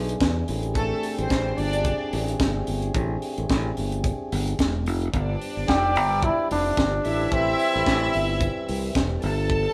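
Disco at 110 BPM with a light sixteenth-note swing, driving and danceable, built on a tight funk kit with a high-tuned snare and a growly fingered electric bass, while a mellow French horn section holds sustained chords and a clear, floating string section carries a second line from 0.8 seconds over Am7 and G7. At 5.7 seconds a bright, punchy trombone steps up front with the melody, smooth on top with light vibrato, until 8.4 seconds. The band sounds as if playing live together in a stone room with moderate reverb, in this short cut from a longer piece.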